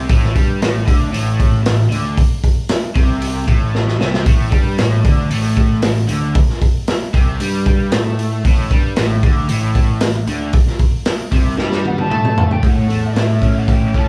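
A dark, overdriven electric guitar riff, double-tracked and run through a rotary speaker, opens this hypnotic psychedelic rock piece at 115 BPM in 4/4 alongside a fuzzed, picked electric bass, with a gritty, saturated breakbeat drum kit sitting up front with a punchy kick and a rolled-off top. The band plays live in one room, held in a moderate large studio reverb, vamping on Am7 with drum fills marking the phrases. At 11.9 seconds a distant, pure silver concert flute with vibrato adds a kaleidoscopic melody, and the harmony brightens to A major at 12.6 seconds before this cut from a longer piece ends.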